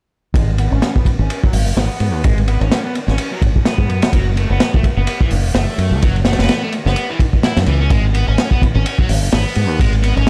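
This funky, energetic breakbeat excerpt opens at 0.3 seconds with a crunchy acoustic drum kit, fingered electric bass and thick fuzz guitar all entering together at 127 BPM in G# minor, with a 56% swing on the sixteenths. The drums sit up front, with a punchy kick, medium-tuned snare, hi-hat and ride, dark cymbals and a saturated, gritty character with a rolled-off top. Alongside them, the electric bass is round and direct, also up front in the mix. The bright, double-tracked fuzz guitar plays a picked riff that runs under a filter sweep from 0.4 seconds to the end, with tape echo adding trails. The harmony moves from G#m to F#m7 at 4.1 seconds and returns to G#m at 7.9 seconds, all within a small room ambience and a dark, warm production.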